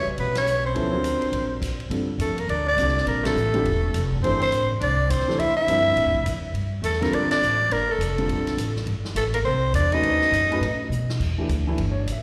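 Searching and intense, this modal jazz excerpt in G dorian swings at 207 BPM, with a growling, raspy soprano saxophone carrying the melody up front while a breathy alto saxophone with scooped notes traces a second line in the background, both touched by slapback echo until 10.9 seconds. A baby grand piano with audible action noise comps on chords like Gm9 and Am/G, a woody, thumpy pizzicato upright bass sits up front, and a big-band drum kit with a punchy kick enters at 0.2 seconds, joining band accents, a stop at 1.6 seconds and a drum fill at 10.9 seconds. The live gig sound comes through the venue's PA with recital hall reverb and small room ambience.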